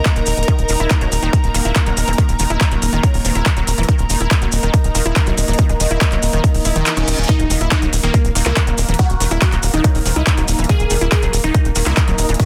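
An overdriven, punchy electronic kick drives this psychedelic, driving trance excerpt at 141 BPM in Eb phrygian, joined by a big-room dance kit with metallic hats and handclaps, a grainy background cabasa, a tight, nasal sequencer bass with tube saturation, a very quiet, aggressive FM wobble bass, a lush, detuned unison pluck riff with delay and sidechain pumping, and a morphing, warbling wavetable pad with phaser, while a rich, earthy chamber string section plays until a reverse cymbal at 6.6 s, a brief kick dropout and an impact usher in the drop at 7.3 s, where a punchy supersaw stab melody with a moving notch and dub echo takes the lead in a dense, heavily limited mix.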